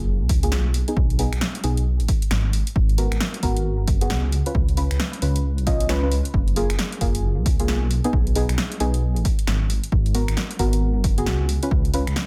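Soft, nasal chord stabs with chorus and digital delay open this skippy, late-night two-step garage excerpt, cycling through F#maj9, B6, G#m9 and C#7 in G# dorian over a dark, rumbling detuned saw bass that sits up front with a beating low end. At 0.3 seconds the drums arrive at 134 BPM with a 61% swing on the 16ths: a layered, punchy electronic kick alongside a tape-toned analog drum machine whose snare, hi-hat and finger snaps carry the sound of a large room. The whole excerpt is bathed in digital ambience.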